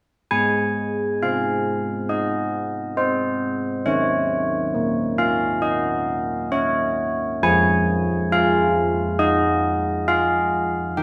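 Festive yet serene, this short classical excerpt is a tune for church bells at a calm 68 BPM in Ab major, played solo on carillon bells from 0.3 to 11.0 seconds, their bronze, ringing tone with its minor-third overtone softened by a padded clapper into something mellow and airy, heard up front within a moderate recital hall reverb.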